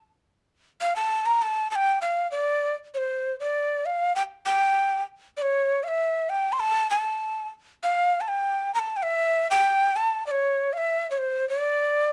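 A dark production with light reverb frames this melancholic, wistful Andean folk fragment in 2/4, cut from a longer piece. A solo cane quena enters at 0.8 s and sits up front, its breathy, end-blown tone carrying vibrato, a crisp chiffing attack and lifted highs as it ranges from C5 to C6. The line is slightly unsteady, lending a fragile, human quality as the music moves into a new section at 2.9 s.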